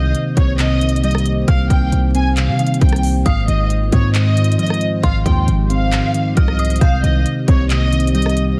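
Brooding, melancholic half-time trap with a lush, vibrato-rich studio violin section carrying the melody alongside an eerie detuned FM synth bell, backed by mellow electric-piano-like synth keys, a warbling lo-fi tape-like pad in the background, a punchy 808-style bass and a crisp trap drum kit with a hard-clipped kick, handclaps and rim clicks, all in a dense, heavily limited mix dusted with vinyl crackle.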